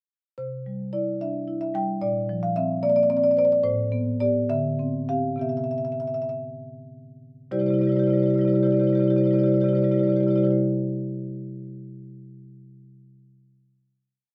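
This is a contemporary classical piece for solo marimba, complete in itself and brief, with a warm, flowing mood. It moves in a rubato 6/8 at roughly 53-74 BPM counted in dotted quarters, settled in C major and tuned slightly low at A4 = 438 Hz. The marimba, played with soft mallets on rosewood bars, sounds woody, mellow and round, sitting up front with a mid-forward presence as it spans from A2 to G5. It weaves a single-line melody over rocking broken chords, passing from C through Bbadd9, Am9, D9sus4 and Cmaj7. From 2.8 seconds the pace slows until 7.5 seconds, where the harmony settles on a final Cadd9. The marimba's last sound fades at 10.5 seconds, and the closing chord section, set in a light reverb, runs on to about 11.9 seconds.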